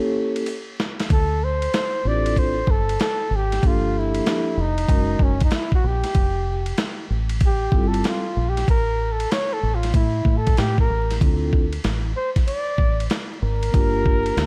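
Smoky and nocturnal, this swung jazz-hop cut from a longer piece opens with a breathy, scooped flugelhorn and a ringing, softly struck vibraphone over a drum fill, before a round, foam-muted dub bass enters at 1.1 seconds beneath the horn's up-front solo, the gritty, thumpy sampler-style kit of kick, snare, hi-hat and ride sitting compressed and roomy in a dark, lightly reverberant mix dusted with vinyl crackle.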